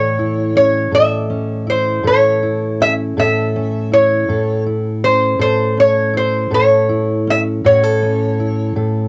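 Rollicking and gritty, this short cut from a longer acoustic country blues piece rolls along in a straight 12/8 feel, with a fingerpicked lap resonator guitar carrying the slide melody up front in a metallic, nasal voice. Beneath it, a jumbo steel-string acoustic guitar fingerpicks the accompaniment on old strings, its tone woody and full-bodied, and it rings on briefly after the slide line stops at 8.7 seconds. Light reverb and the character of a home cassette recording give the pair a homespun intimacy.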